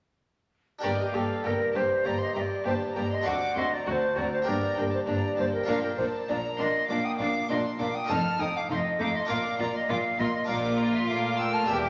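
A straight, driving 4/4 pulse carries this stormy, baroque-style concerto movement, heard here as a short cut from a longer work with solo episodes. Around 0.8 s the whole ensemble enters together. An airy wooden flute sits up front with a soft attack and vibrato, sharing the melody with a high violin section whose close, gut-string tone has light vibrato and a reedy edge. Beneath them, a rich second violin line and a dark, nasal viola section fill the background. A brilliant, full-bodied harpsichord plucks its accompaniment, while cellos and double basses anchor the bass with a period-style bowed sound. The recital hall reverb is wet, and the harmony turns through dominant-seventh chords before settling on Bb near 9.3 s.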